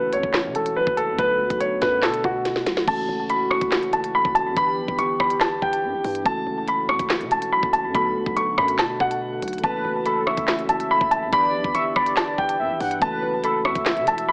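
A dark, up-front concert grand piano carries the ominous melody of this tense, half-time drill hip hop piece at 142 BPM in F# phrygian, over a clean tine electric piano, a mellow classical-style brass section holding sustained chords with light vibrato, a heavy distorted 808-style bass in the background, and an electronic drill kit with knocking kick, sharp snare and crisp hats that plays a fill at 2.5 seconds, while a velvety, chorused synth lead adds a second line from 9.6 seconds, the whole mix set in plate reverb with an AM radio sound.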